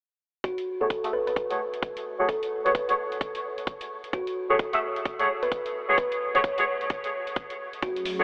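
Bouncy and gritty, this bass house excerpt swings along on a tight, tape-colored kick that sits up front, with metallic electronic hi-hats recorded in a small room. A woody, hollow-sounding kalimba carries the melody through tape echo, while a mellow, jazz-style horn section plays tight stabs with light vibrato, shaped by a filter sweep, sidechain pumping and tape echo of its own. A detuned, resonant sawtooth pad with chorus slips in at 7.8 s, all inside a dreamy, reverb-soaked mix with a telephone-like tone.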